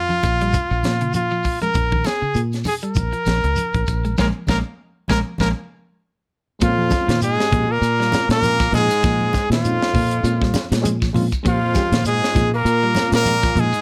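A driving 4/4 afrobeat groove at 99 BPM, swung on the sixteenths, opens with a brilliant trumpet melody with vibrato that sits up front, over a round, foam-muted fingered bass anchoring the low end in Bb dorian. Ringing congas and a grainy shekere enter in the background together with a dark, clean semi-hollow guitar playing picked arpeggios, and a tight funk kit of high-tuned snare, tight kick and hi-hat follows a moment later. The band hits accents from 4.2 to 6.6 seconds, capped by a short drum fill. At 6.6 seconds the harmony settles on Bbm7, and a raspy, gritty tenor saxophone and a very quiet dark trombone section add a second line, while a reedy electric piano, lightly overdriven with fast tremolo, fills in the accompaniment. Light reverb frames the intense, cut-from-a-longer-piece passage.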